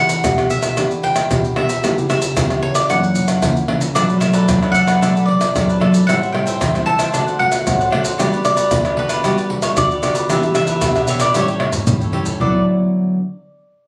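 Lively and festive, this samba and choro excerpt in D major at 114 BPM sets a bowl-back mandolin melody with double strings and plate reverb over an up-front, thumb-plucked nylon-string guitar, a crisp cavaquinho entering at 3.9 seconds, and a small-room percussion section of maracas, tight surdo, pandeiro and tamborim that plays a drum fill at 11.6 seconds before the harmony resolves to D69 at 12.4 seconds, all heard as if recorded on a phone in a club.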